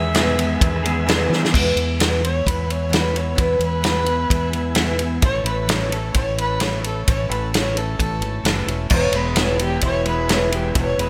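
Hopeful and open-road in feel, this folk rock and heartland rock excerpt moves at 130 BPM in 4/4 in E major, with a brilliant 1980s-style digital sheen and a lush hall reverb. A punchy, up-front country drum kit with gated reverb, fingered electric bass and a full-bodied jumbo acoustic guitar drive it forward, while a smooth tonewheel organ through a slow rotary speaker holds chords in the background and a slightly broken-up, lo-fi electric guitar plays a riff until 1.5 seconds, returning at 8.9 seconds. After a drum fill at 1.3 seconds, a dark, nasal and woody fiddle with light vibrato and delay takes a distant solo over chords that move from E to A and back to E.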